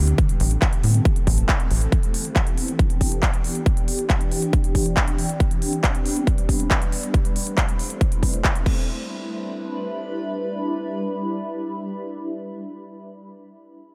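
At 138 BPM in a straight 4/4, this emotional, bittersweet uplifting trance cut in E minor opens with a tight, punchy sawtooth sequencer bass that stops at 1.9 s, while an overdriven, up-front electronic kick and a big-room dance kit with crisp hats, handclaps and crash cymbal drive on until 8.7 s, and a shimmering, ethereal ambient pad with chorus, phaser and a filter sweep carries the Am, Em7, Cadd9 and G chords through to 13.1 s in a dry, close mix.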